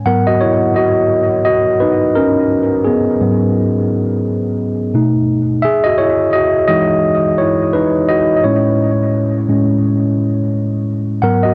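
A worn, slightly out-of-tune tine electric piano plays alone and up front from 0.0 to 11.5 seconds in this hazy, melancholic hip hop fragment at 86 BPM with a 16th-note swing in G# minor, moving from G#m11 through B7 and Emaj9 to Amaj7, its clean, direct tone softened by cassette tape, a low-pass filter, dub echo and a moderate plate reverb.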